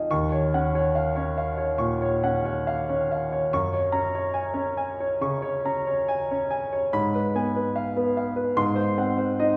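Rubato phrasing in a slow 4/4, around 68-76 BPM, gives this wistful, hazy impressionist solo piano fragment a floating, unhurried feel. A clear, open concert grand with deep bass sits up front across a span from Eb2 to Ab6, tuned to A4 = 436 Hz, moving through Ebm9, Gbadd9 at 3.5 seconds, Abm6 and Ebm6/Ab. A wet recital hall reverb places the listener further back in the room, letting each chord bloom into a misty halo.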